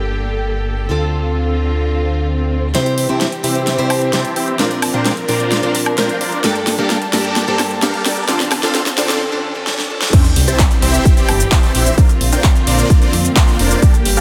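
Anthemic and powerful, this cut from a longer festival progressive house track runs at 130 BPM in a straight 4/4, moving through Gmadd9, Dm7, C and Bbadd9. It opens with a picked plugged-in steel-string acoustic guitar with finger squeak, a smooth bowed studio string section holding rich chords with vibrato, and a thick, saturated detuned saw bass with chorus, all breathing with sidechain pumping. At 2.7 seconds a huge, euphoric supersaw lead takes up the riff, bright and full-bodied with phaser and delay, while a big-room dance kit with a huge snare, metallic hats, handclaps, shaker and woodblock drives a build-up marked by drum fills and a filter sweep on the lead. A very quiet swell, riser and sub drop sit beneath, and after a brief break the drop lands at 10.1 seconds with an impact and a punchy up-front electronic kick as the guitar stops, with the bass returning moments later. The mix carries light reverb and a high-pass filter, with the layered, produced drums placed up front.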